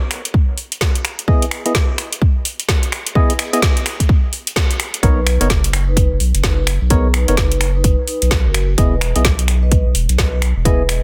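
Sunny and soulful, this swung two-step UK garage clip builds on finger snaps, metallic hats and a woody, softly clipped snare over a punchy electronic kick, with hollow, nasal organ stabs carrying chorus and tape echo arriving on an Emaj7 at 1.3 seconds, before the drop at 5.0 seconds brings in a thick, saturated sub bass and a ringing vibraphone melody with tape echo, set in light digital ambience and a dense, heavily limited modern master.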